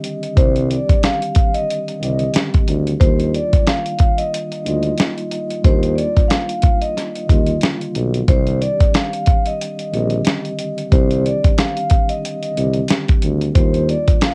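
Boom-bap hip-hop with a tough, gritty mood and swung sixteenths, this fragment of a longer piece sets a ringing, metallic vibraphone melody played with soft mallets and analog delay over mellow tine electric piano chords tinted by cassette tape, a compressed, dusty sampler-style drum kit with a thumpy kick up front, and a warm, roomy tuba bass with light vibrato entering at 0.4 s, in a dry home recording on cassette.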